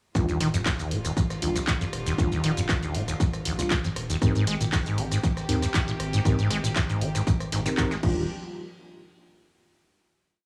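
Trippy and playful, this short acid house piece in Eb major runs at 118 BPM in a straight 4/4, with a squelchy, resonant sawtooth acid bass riding up front in a sliding, accented 16-step line through analog delay, tube saturation and cassette tape, pumping against a punchy electronic kick that drives a four-on-the-floor pulse. A punchy analog drum machine adds programmed hats, shaker, rim, clap and crash, a very quiet, gritty sampler-style kit loops an overdriven breakbeat with edits, and a round, deep analog bass enters at 0.4 s with an off-beat line in the background. Over Ebmaj9 and Abmaj9, a mellow tine electric piano throws syncopated parallel chord stabs through analog delay while a reedy, gut-string chamber section holds a sustained, pumping pad, all in a dry, gritty small-room sound before a final hit at 8.3 s.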